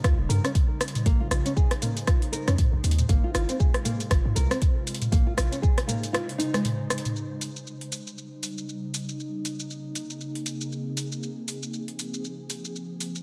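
A driving, earthy afro house groove at 118 BPM in Bb dorian opens with everything at once: a deep, up-front electronic kick, an afro-pop kit of metallic hi-hats, rim clicks, shaker and toms, a boomy 808-style bass with a sine body and noise layer, woody thumb-plucked nylon-string guitar arpeggios, and an ethereal, airy pad of detuned sawtooth and triangle voices holding sustained chords. The swung sixteenths give the percussion a loose lilt, while the bass, guitar and pad all pump against the beat, and the old-stringed classical guitar trails a dub echo. The chords move between Eb7, Bbm11 and Ab6. The low end drops away before a break at 6.1 seconds, and the guitar falls silent soon after. From 7.2 seconds the pad, with its ensemble chorus and built-in reverb, carries on under a filter sweep beside the produced drum kit and its small room ambience until this excerpt from a longer piece ends.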